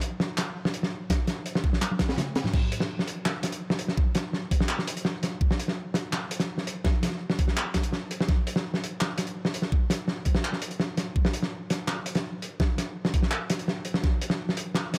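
A crunchy, saturated breakbeat kit opens this dark, cinematic half-time drum and bass passage at 167 BPM, its gritty snare tuned high, its cymbals dusky and its top end rolled off as handclaps, hi-hat, toms and crash sit up front. A knocking electronic kick joins at 1.1 seconds, and a drum fill leads into the drop at 2.5 seconds, after which the two drum parts carry the groove until the kick stops at 14.1 seconds. The sound is close and dry, with little reverb, and the passage is cut from a longer piece.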